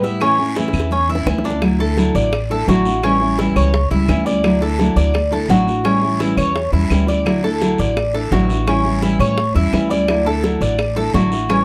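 Fingerpicked, bright nylon-string guitar, metallic double-strung tres arpeggios, a growly pizzicato upright bass up front and a raspy guiro open this danceable, warm Cuban son and guajira excerpt at 170 BPM in D major, with tight, high-tuned bongos and woody claves joining softly in the background at 0.2 seconds, a drum fill from 0.6 to 1.6 seconds, and the chords then alternating between Dadd9 and A7 in a dark studio mix with moderate reverb.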